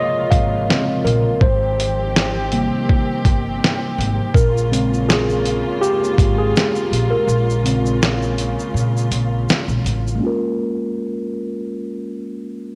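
Hazy and nostalgic, this lo-fi hip hop cut from a longer piece opens with a worn, slightly out-of-tune tine electric piano carrying the lead over distant, bowed strings with a dark vibrato. At 0.3 seconds a woody pizzicato upright bass on gut strings joins, along with a gritty, compressed sampler-style kit of thumpy kick, fat snare, hi-hat and shaker, with the kit sitting up front. The piano, strings and drums all carry cassette-tape grit in a lightly reverberant home-recorded space, and a break arrives at 7.3 seconds. At 10.2 seconds the band drops away, leaving the low-pass-filtered piano alone under a filter sweep until 12.8 seconds.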